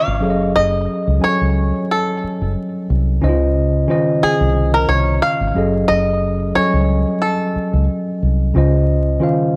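Wrapped in vinyl crackle and a moderate spring reverb, this relaxed, smooth neo-soul and R&B excerpt at 90 BPM in a lightly swung 4/4 sets a bright, twangy fingerpicked banjo melody over a worn, slightly out-of-tune tine electric piano and a dark, round, foam-muted fingered electric bass, all up front as the chords move between Gbm6 and Dbmaj9 until the banjo drops out at 7.8 seconds and the piano carries on to 9.6 seconds.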